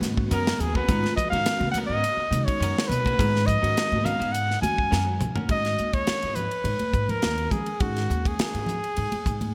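Nocturnal and intense, this electric jazz fusion excerpt puts a smooth-topped trumpet up front, singing with vibrato and scooped notes over a woody pizzicato upright bass, a tight, dry funk drum kit with gated reverb, and bright, high-tuned congas in the background. A reedy electric piano with ensemble chorus, a clean picked guitar playing compressed stabs, and a very quiet vintage string machine of violas holding soft sustained chords fill in behind, with the strings and guitar dropping out at 5.5 seconds after a drum fill as the harmony shifts. The bright 1980s-style digital production sits in a moderate plate reverb.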